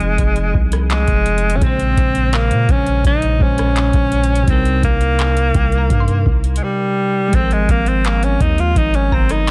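Dreamy and tender, this contemporary R&B excerpt moves at 84 BPM in a straight 4/4, with a clear, up-front alto saxophone carrying the melody through delay, its vibrato and scooped notes sitting over a bell-like tine electric piano and a deep, mellow 808-style bass that decays long. A booming analog drum machine with a tape-warm deep kick, metallic hats, handclaps and rim clicks carries a vintage 12-bit sampler grit, while from 5.6 seconds a glassy, crystalline wavetable pluck with chorus and delay glimmers in the background. Chords pass from Fm7 through Bbm9 and Cm7 to Ab69 after a brief break at 6.6 seconds, all within digital ambience and a dense, heavily limited modern master.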